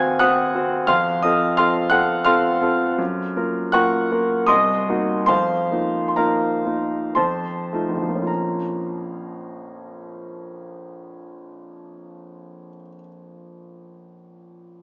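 Heard through a small speaker in a moderate concert hall reverb, this short excerpt is a passionate, stormy romantic character piece in B-flat minor for solo concert grand piano, sitting up front with a clear, natural tone, deep bass and long sustain across a range from Bb1 to Ab6, tuned to A4 = 437 Hz. In a rubato 3/4 between 52 and 88 BPM, the opening section moves through F, Gbmaj7, Cm7b5 and F7sus4, slowing from 1.9 seconds until it resolves from F7 onto B-flat minor at 8.3 seconds, where a second section begins and runs to the cut at 14.7 seconds.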